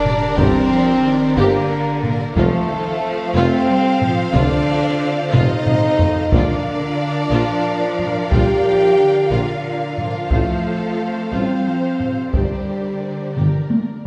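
Dark and heroic, this cinematic orchestral cue moves at 60 BPM in a straight 6/8, built on a Gm, F, Bb, F/A progression that returns to Gm. Up front, a mellow French horn section holds soft-attack chords over hard-stick taiko drums that sound distant in a large room, with fills at 5.3 and 13.4 seconds, while a rich cello section, an expressive double bass section and a very quiet tuba carry the bass. In the background, a woody violin section takes the melody against a dark second violin line, a smooth viola accompaniment and lush sustained string chords, set in a wet scoring-stage reverb.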